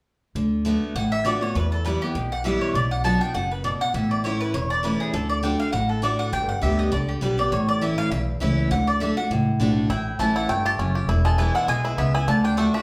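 A woody, up-front mandolin carries the melody from 1.0 s in this lively, virtuosic swung bluegrass excerpt, backed by a bright, full-bodied picked steel-string guitar with audible finger squeak and a thumpy pizzicato upright bass on gut strings. At 9.9 s a twangy, percussive fingerpicked banjo joins with a second melody line, while the whole band plays live in one room, bathed in a large studio reverb.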